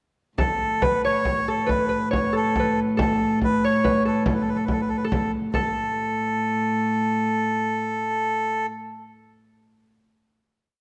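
Medieval dance in 6/8, festive and rustic, led by a reedy, breathy melodica playing an ornamented modal melody up front, while a fingerpicked, ringing concert harp follows the same line with its own ornaments. Beneath them a single bowed, fretted viola da gamba holds a low drone with light vibrato and a nasal gut-string tone, and a deep frame drum played with soft hands keeps an evenly spread pattern until 5.7 s. The short piece settles onto a final note from 5.5 s to 8.0 s, in a dark, warm production bathed in wet, spacious reverb.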